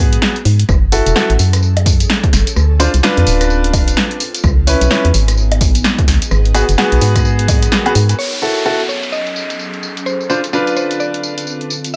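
UK garage in a skippy two-step groove at 128 BPM, this moody clip sets bright, intimate baby grand piano stabs with tape echo over a hollow, organ-like FM bass that pumps with tube saturation until 8.1 seconds, while a punchy analog drum machine of filtered bongos, hi-hat, rim click, snare and tambourine is joined by a kick drum that enters at 0.7 seconds, an ethereal, airy pad with chorus and phaser sits in the background, and at 8.2 seconds a woody, mallet-like synth pluck with delay takes up the melody as an electronic downlifter sounds.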